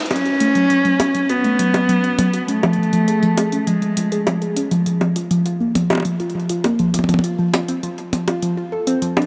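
A melancholic, cerebral IDM piece at 101 BPM opens at 0.1 seconds with an intimate bowed cello melody, played sul tasto with light vibrato, over a ringing, harp-like synth pluck that spins arpeggios through chorus, digital delay and a filter sweep. A gritty, pitched-up, sampler-style jungle kit of bongos, hi-hat and toms sits lower in the mix with its own delay, and the cello falls away at 4.6 seconds while the mellow pluck carries on until 9.2 seconds. The dark production is bathed in a huge ambient reverb, and the passage is cut from a longer piece.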